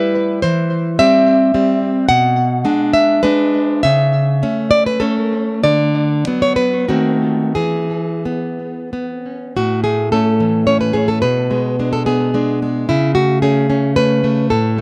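A lone nylon-string guitar opens this tender, nostalgic romantic piece, fingerpicked up front with a bright, full-bodied tone from fresh strings. The playing moves in a flexible rubato over a gentle 3/4 lilt, spanning from A2 up to F#5 and carrying a deep classical character. Tape echo on the guitar adds trailing repeats, while light reverb and a dark, warm production frame the performance. The harmony drifts through chords such as C/E, Bm6 and A/C#, building tension through a D#dim7 and E before settling onto A at 9.6 seconds. There the music turns to a second section that revisits Bm6 and A/C#, and the excerpt ends at 14.8 seconds as part of a longer piece.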